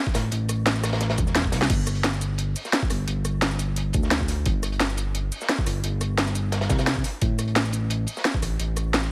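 A straight 4/4 metre anchors this soulful, melancholic liquid drum and bass excerpt, with a brief drum fill between 1.4 and 1.7 seconds. Up front sits an overdriven electronic drum and bass kit with a cracking snare, bright hats, crash cymbal, rim click and shaker, layered over a knocking, overdriven electronic kick that drops out at 8.4 seconds. Underneath, a quieter, crunchy acoustic breakbeat kit of hi-hat and medium-tuned snare adds gritty, saturated texture, its dark, rolled-off sound thinned by high-pass filtering on the hats, snare and room. The smooth synth bass blends sawtooth and square waves into a mellow, sustained tone with a fast attack and vibrato, held prominently in the mix. The drums carry the feel of a small room, while the overall sound stays dry and close.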